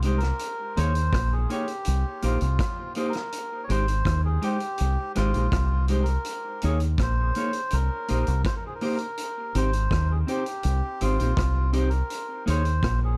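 A relaxed, straight 4/4 roots reggae groove at 82 BPM in Ab major, carried by a vintage drum kit of hi-hat, tight saturated kick and rim click with a gritty, rolled-off top, under a deep, round fingered electric bass that sits dark and up front in this sunny, laid-back excerpt. A clean, picked electric guitar with dub echo accompanies the cycling Eb7sus4, Cm7 and Abmaj7 changes, while a reedy, breathy melodica, also treated with dub echo, carries the melody from 0.2 seconds. The sound is dry and close, like a 1970s studio recording, and the passage is cut from a longer piece.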